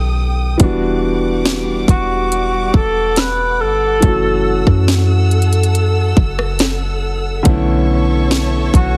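Sensual and longing, this slow contemporary R&B fragment sets a dark, vibrato-touched cor anglais melody with tape echo, entering at 1.9 seconds, over an intimate concert grand piano with audible action noise, distant bowed strings that pump against the sidechain, a round, sine-like 808-style bass and a crisp trap kit with a hard-clipped kick and sharp snare, all pressed into a heavily compressed radio sound with light studio reverb.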